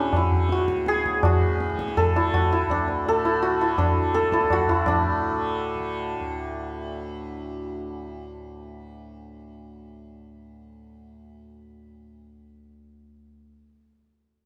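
In a straight 5/4 at 166 BPM that keeps speeding up, the low-tuned tabla's short-ringing strokes accompany this meditative, devotional Hindustani fragment in raga yaman on D (tuned to A4 = 439 Hz) until 5.0 seconds. Up front, the hammered santur spins a shimmering, ringing melody until 8.6 seconds, while the softly plucked, buzzing tanpura drone sustains beneath it and carries on alone to 13.3 seconds. The players share one room, bathed in a wet, large studio reverb.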